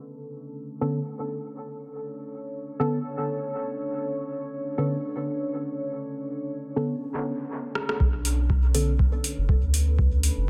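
Mellow chord stabs sit up front in this hypnotic, cavernous dub techno excerpt at 121 BPM in B minor, their soft, evolving tone colored by chorus, phaser and dub echo as they pump against the sidechain from 0.8 to 8.9 seconds. Behind them, a dark, moody ambient pad holds a sustained Bm9 chord, slow to bloom and long to fade, with its own built-in reverb and chorus while a filter sweep moves through it across the opening 8 seconds. A drum fill at 7.8 seconds brings in the deep house kit, whose metallic hats and rim click carry overdrive, low-pass filtering and dub echo, with a large-room character. At 8.0 seconds the groove lands: an analog, tape-warm electronic kick and a round, soft sub bass, also pumping against the sidechain, anchor the low end with a swung 16th-note feel. Light digital ambience with a low-pass filter lends the whole mix a deep, shadowy space.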